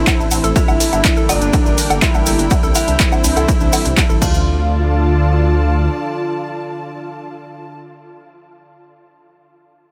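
A straight 4/4 pulse from an overdriven electronic kick and a punchy analog drum machine of crash, ride, hi-hat, handclaps and woodblock, with a grainy cabasa behind, powers this driving, cinematic melodic techno drop until the drums stop at 4.3 s. Underneath, a deep, rumbling detuned saw bass pumps with sidechain until 5.9 s, while a thick unison pad holds sustained chords and a veiled, con sordino string section adds dark texture. A fat sawtooth lead with vibrato carries the melody through chorus and delay, alongside a very quiet, eerie FM synth bell and a woody, wave-folded pluck whose arpeggios, colored by cassette tape and delay, sit in the background of a dry mix.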